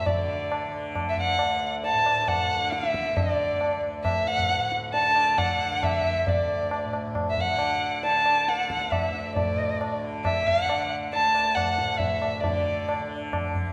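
Hindustani classical music in raga hamsadhwani and a seven-beat cycle, devotional and radiant, where a dark, woody bowed violin with vibrato and a smooth top sings the melody up front, a bright, buzzing tanpura drone shimmers beneath, and a high-tuned, ringing tabla sits close, all carried by the wet reverb of a church or concert hall in this brief passage cut from a longer piece.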